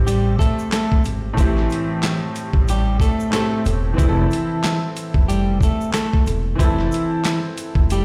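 Reflective and gritty, this excerpt of boom-bap hip-hop moves at 92 BPM with a swung 16th-note feel in A minor, shifting from Am7 to Fmaj7 at 4.0 seconds. A compressed, pitched-down sampler-style drum kit with a thumpy kick, medium-tuned snare, handclaps and hi-hat sits up front alongside a darkly toned, slightly broken-up electric guitar melody carrying delay, while a woody pizzicato upright bass on gut strings anchors the low end. A brilliant, worn and slightly detuned upright piano with a cassette-tape colour adds accompaniment, a grainy egg shaker sits in the background, and the whole excerpt rings out through a bare stone room as if played on a big sound system.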